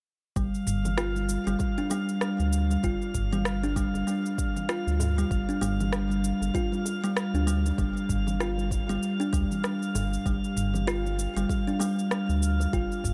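Lightly reverberant and earthy, this organic downtempo piece at 97 BPM in 4/4 carries a mystical mood, with a gentle 16th-note swing over a G7(no3) chord, cut from a longer work. Up front, a woody, hollow-boxed kalimba plays short thumb-plucked arpeggios through digital delay and shimmer reverb from 0.4 seconds, over a round, dark analog bass and a deep, tape-warm electronic kick. An afro-pop kit of rim clicks, shaker and toms, very quiet soft-handed congas and bongos entering at 0.8 seconds, and a glassy texture of drifting overtones with chorus and shimmer complete the calm, produced sound until 13.1 seconds.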